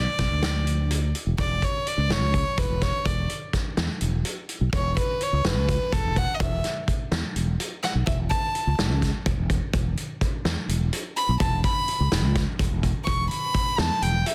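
Dense studio reverb and a heavily limited modern master give this cut from a longer progressive instrumental a full, pressed-forward sound, with violin, fretless bass and drums all up front. It moves in a straight 7/8 at 252 BPM counted in eighths, tuned to A4 = 442 Hz, and the mood is intricate and driving. A fretless electric bass with ensemble chorus carries the low end from E1 to E2, its direct tone growly and punchy. A vintage acoustic kit enters at 0.2 s with hi-hat, a medium-tuned snare and a kick given soft clipping, sounding saturated and gritty with a rolled-off top. The violin is a single bowed player with an airy, nasal, reedy gut-string tone in period style, and it takes a solo from 1.4 s, ranging from A4 to C#6. Beneath it the chords move from C#m/E to E5, then alternate E5 with Aadd9/E and A/E, ending on E5.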